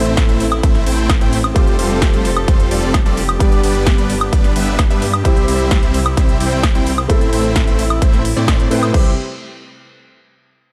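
This festival progressive house excerpt opens straight into a triumphant, euphoric drop, with a huge, thick supersaw riff and a lush, chorused detuned saw bass pumping against a punchy, up-front electronic kick. A big-room kit adds a punchy snare, crisp hats, ride, crash and woodblock, while a soft, felt-muted upright piano with tape echo sits in the background and a dark, floating string section holds very quiet sustained chords over a progression moving from Am through Fadd9 and G to C. The production is dark and tape-warm, wrapped in digital ambience, and the drop gives way to a new section at 8.9 seconds.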